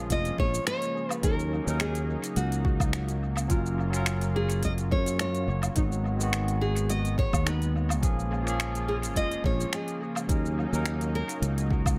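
An echo-heavy mix with light reverb and digital ambience frames this sunny, smooth sunset chillout excerpt at 106 BPM in 4/4, with a gentle 16th-note swing and tuning set to A4 = 436 Hz. A deep, tape-warm electronic kick and an overdriven R&B kit of finger snaps, crisp hi-hat, shaker and woodblock sit under a growly, up-front fretless bass, while a barky tine electric piano with 12-bit sampler grit and analog delay accompanies over a thick, detuned unison pad with chorus and phaser in the background. A bright, fingerpicked nylon-string guitar carries the melody through analog delay from 0.1 to 11.4 seconds, and a very quiet, round pluck traces arpeggios over chords moving from A#m7 through D#m7, F#maj7 and G#m7.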